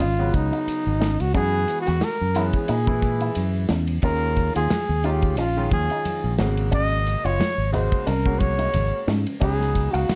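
A dark, warm production with light reverb and small-room ambience frames this bright, soaring excerpt of electric jazz fusion at 89 BPM in 4/4, with a gentle sixteenth-note swing over suspended ninth chords that begin on Db9sus4. Up front, a breathy trumpet plays the solo melody with vibrato and scooped notes, supported by a direct, amped fingered electric bass, a smooth modern studio drum kit with a tight kick, rolled-off top and ride cymbal, and a clear grand piano with long sustain. In the background, a twangy, compressed electric guitar with an envelope filter and lush chorus adds clean picked stabs, and thin-skinned congas played with hard hands join at 4.0 seconds.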